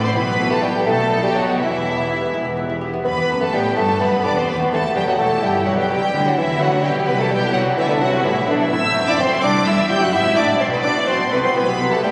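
In 6/8 time, this stormy, dramatic baroque-style concerto fragment sets a mellow, up-front solo bassoon melody against a distant, soft-attacked high violin section, a second violin section with a focused, smooth-topped tone, a viola section in the background, a lush cello section and a rich chamber double bass section underneath, and a bright, delicate fingerpicked lute on gut double strings sitting very quiet, the ensemble bathed in a wet church reverb and captured on a phone in the room.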